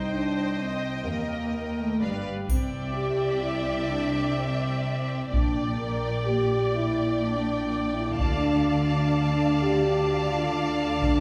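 Mellow French horns hold sustained chords over rich, lush cellos and double basses in this dark, dramatic cinematic score, moving at 126 BPM in 3/4 through Cm, Eb and G7 before settling on Cadd9, Gm/Bb and Dm. Above them, a distant, smooth violin section carries the melody beside an expressive, soft-attack second violin line and focused violas. Heavy taiko drums enter at 2.5 seconds with a brief dry triangle, all wrapped in a church-like hall reverb with a faint mains hum, in a cut from a longer piece.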